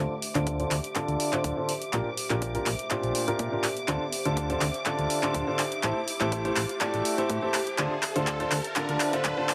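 Energetic and soulful, this piano house build-up at 123 BPM in D minor rides a brilliant, up-front grand piano riff under a filter sweep and digital delay, with sidechain pumping shared by the piano, a round, dark FM bass and a smooth, bowed violin section holding sustained chords, while a warbling, lo-fi pad adds nostalgic haze, an overdriven analog drum machine drives handclaps and hi-hat through a drum fill alongside a very quiet layered electronic kick, and a faint riser creeps in at 2.2 seconds over the Dm7, Bb6 and Am7 changes.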